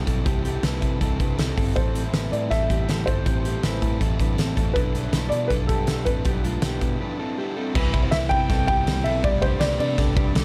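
Jangly indie pop, bright and breezy, moves at 160 BPM in C major through this excerpt cut from a longer piece. A loose acoustic drum kit sits up front with a punchy kick, fat snare and dark cymbals in a pumping room, beneath a round, foam-muted electric bass, a crunchy overdriven guitar and a slightly broken-up guitar playing arpeggios through a small old amp. A woody, slightly detuned upright piano carries the melody from 1.8 s, audible action noise and all. During a break that begins at 7.0 s, a very quiet, mellow organ-like string ensemble with phaser and chorus adds sustained chords from 7.7 s, all in a small room reverb.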